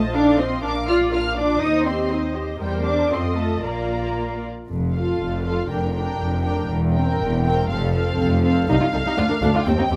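Graceful and cheerful, this quick classical-period movement for string orchestra moves at 120 BPM in 2/4 with a rubato feel, opening in Bb major before settling into F major from 4.7 s. Muted violins carry the melody with lush vibrato while a second, more distant violin section traces a line spanning C4 to F6, over veiled viola accompaniment and a bass of con sordino cellos, entering at 0.1 s, and double basses that sit close and up front. The violins' soft-attack bowing and the dark, muted colour of the ensemble give this fragment of a longer piece a hushed elegance in a lightly reverberant space.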